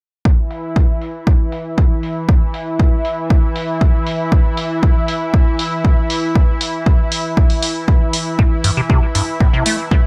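A lush, detuned sawtooth pad and a punchy analog kick drum open this gritty, raw acid house excerpt at 118 BPM in straight 4/4, the pad holding sustained chords between E3 and E4 with a slow attack, warbling chorus and sidechain pumping. A tape-warm electronic hi-hat joins at 0.5 seconds, and both it and the up-front kick were re-recorded in a small room, with a low-pass filter dulling the hats and their room sound. A filter sweep runs across the drums for the whole passage, giving the groove a shifting edge. At 8.4 seconds a squelchy, resonant square-wave acid bass enters with a riff spanning G2 to A3, its fast attack and decaying notes colored by phaser, analog chorus, tape echo and sidechain pumping. The mix stays dry and close, with the kick dominant and the pad and hats sitting lower beneath it.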